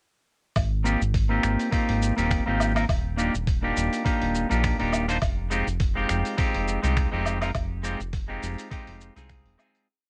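This short, complete piece has the dry, close sound of a home cassette recording, with little reverb and a tape-softened grit. It is a relaxed, wistful sunset chillout groove in F dorian at 103 BPM in 4/4, with a lazy swing on the sixteenths. From 0.6 seconds, a dusty sampler-style kit lays down a light lounge beat of finger snaps, half-open hi-hat, shaker and low woodblock, and a compressed, thumpy electronic kick sits under it. A deep, round analog bass, built from detuned sawtooth, sine and triangle tones, plays a dark, sustained dotted-rhythm line up front. At 0.8 seconds a bright, clean picked electric guitar enters with dotted-rhythm rootless chords carrying tape echo, moving through Abmaj13, Ebmaj9 and Fm9. The whole groove begins fading out at 6.8 seconds and drifts away by the end.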